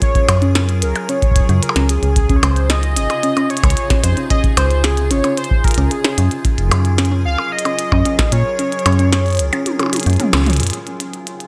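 IDM at 112 BPM with a playful, wistful mood, where a velvety synth lead sings over an icy glass pad pumping against the deep, dry kick, clicky glitchy drums, a metallic FM bass, a warbly dusty pluck arpeggio and a bubbling stepped-filter texture in the background, moving between Gbmaj9 and Dbmaj9 until the kick drops out at 8.6 seconds, followed by a drum fill at 9.7 seconds and a band accent at 10.3 seconds.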